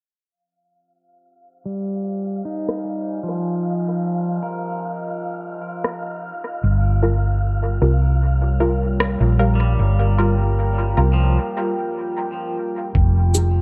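Meditative and deep, this ambient dub excerpt opens with a filtered pedal steel guitar playing twangy arpeggios through dub echo. A breathy, wind-like tuned noise texture and a moody pad of sustained chords soon join it, the pad fading in under a long filter sweep. Electronic rim clicks and cabasa enter at 2.7 seconds, dulled by low-pass filtering and sent into echo. At 6.6 seconds a dark, round hollow-body electric bass arrives up front as the harmony moves from Fm7 to Gm7b5, followed shortly by muted, decaying chord stabs with subtle chorus and dub echo. The steel and the noise texture stop at 11.4 seconds for a break, leaving pad, bass, stabs and percussion, before a compressed, pitched-down, thumpy electronic kick lands briefly as the chord returns to Fm7. The sound is lightly reverberant, with a digital ambience and an overall low-pass softening.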